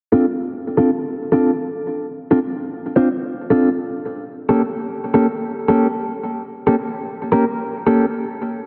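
A clean electric guitar opens at 0.1 s with picked, compressed stabs placed up front, softened by a low-pass filter and trailed by delay. This swaggering, funky glitch hop fragment, cut from a longer piece, moves at 110 BPM in 4/4 with a 61% swing on the sixteenths, giving the stabs a loose, strutting bounce. The harmony sits in D minor, holding on Dm7 before shifting to a tense A7b9 at 4.3 s, with the guitar staying between Bb3 and C5. A lush hall reverb with a 2.7-second tail gives the part a wet, spacious halo. The guitar stops at 8.0 s, and the whole cut has a dense, heavily limited modern master.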